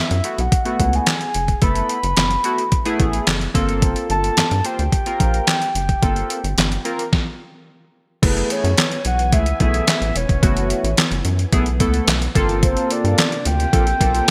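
A straight, up-front 4/4 groove from a thumpy, overdriven 12-bit drum machine with gated reverb on kick, snare, handclaps, hi-hat and crash drives this late-night early-eighties boogie funk fragment, with a rubbery, hollow square bass bouncing underneath and a glossy chorused polysynth adding retro pulse-width chords. Over them floats a round, octave-layered synth lead with vibrato, chorus and phaser. After a brief stop at 7.1 seconds, a silky string machine slips into the background at 8.2 seconds with slow-attack, ensemble-chorused pads, all set in a bright 1980s-style digital production with light ambience.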